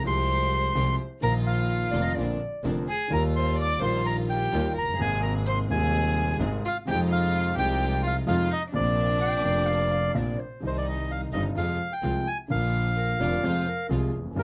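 In a rubato 4/4, this passionate, tense tango excerpt sets a reedy, up-front bandoneon melody over intimate concert grand piano with audible action noise and an earthy, bowed double bass, while an expressive violin with portamento carries a second line until 10.1 s, a dark, distant clarinet enters briefly at 1.9 s and returns from 9.2 s, and a smooth studio string section adds background stabs, set in light reverb with close, detailed microphones.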